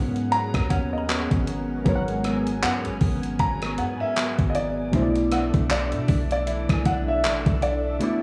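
Late-night and sensual, this contemporary R&B excerpt moves at a slow 78 BPM in 4/4 with a swung sixteenth-note feel, centered in G# minor and shifting from G#m11 to Bm7 at 4.9 seconds. A natural-sounding baby grand piano carries the melody through a tape echo, while analog keys with a round, mellow sawtooth tone and filter sweep supply chorused accompaniment in the background. Beneath them, a smooth, full-bodied analog pad holds dark, detuned sustained chords with chorus and sidechain pumping, and a clean, compressed electric guitar, recorded direct, picks arpeggios through lush chorus and tape echo. A deep, boomy 808-style bass with a sine core and noise layer anchors the low end until 8.0 seconds, when the kick also drops out. The drum machine enters at 0.2 seconds with a thumpy kick, handclaps, hi-hat and rim click, sampler-style and up front with a tape-tinged, big-room character, while a very quiet, woody mallet-like FM pluck adds percussive texture with chorus and phaser over a mostly dry studio sound.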